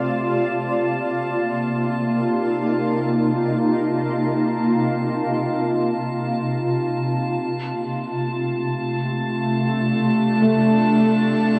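Serene and spacious, this free-time ambient excerpt opens with a shimmering, ethereal pad up front holding sustained chords from F7sus4/C to F6/C, alongside a glassy high texture of drifting overtones that fades in from the start, while a felt-muted upright piano adds soft, intimate arpeggios in the background from 10.4 seconds, all bathed in a huge, wet reverb and a cassette-tape sound.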